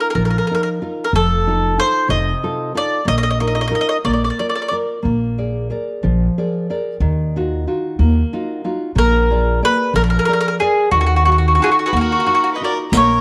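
Bathed in a moderate echo-chamber reverb, this passionate, wistful Italian folk serenade in Eb harmonic minor moves in a rubato 6/8 at 61 BPM, with an up-front, woody, double-strung picked mandolin carrying the melody at the opening and again from 9.0 s over a full-bodied, fingerpicked nylon-string guitar and a thumpy, gut-string pizzicato upright bass, while a distant, clear bowed violin adds a smooth second line with vibrato from 11.6 s and a compressed, saturated riq with dark jingles appears only at 12.9 s.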